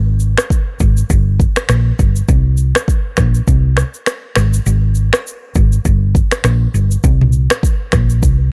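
A hollow-body short-scale electric bass opens this mellow, smooth afrobeats excerpt, its dark, round, punchy tone sitting up front between G1 and C2 from the opening moment. An electronic, produced afro-pop drum kit joins at 0.2 seconds with a deep kick, finger snaps, rim clicks, shaker and toms, also placed close to the listener. At 101 BPM in 4/4 with a lilting sixteenth-note swing, the dry mix moves from a brief opening passage into a new section at 2.3 seconds.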